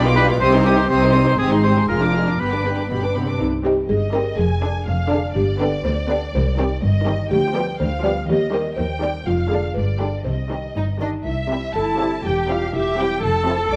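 Bowed string sections open this playful, whimsical cinematic cue in C minor at 122 BPM: a distant, lush upper violin melody with portamento, a second violin line, vibrato-rich violas, dark cellos and soft-attack double basses, joined by a smooth solo oboe until 2.9 s and a very quiet French horn section holding chords, before a woody, buzzing marimba with soft mallets joins the violins on the melody at 3.4 s, its dry, round tone adding a mischievous, magical sparkle within light reverb.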